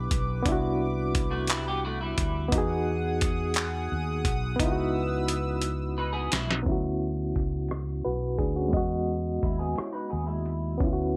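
A dusty, gritty sampler-style drum kit of thumpy kick, snare, rim click, hi-hat and handclaps sits up front in this slow, sensual six-eight R&B excerpt at 58 BPM in E major, with a drum fill arriving at 4.6 seconds. A barky, reedy electric piano with tremolo and a dark, round fretless bass carry the intimate harmony through chords such as Cmaj9, C#m11 and Dmaj13, while a shimmering, nasal pulse-width pad holds sustained chords until 6.7 seconds. A hollow-body electric guitar with analog chorus adds a clean, picked second line, returning at 6.0 seconds as a filter sweep shapes the close under light reverb.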